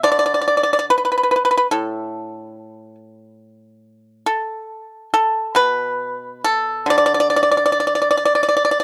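A solo pipa, bright and percussive under fingerpicks, plays up front in a serene, pastoral Chinese traditional excerpt of 8.8 seconds, moving in free rubato around 65-72 BPM across a range from A2 to D5, captured dry and close in a small room with a 1970s studio character.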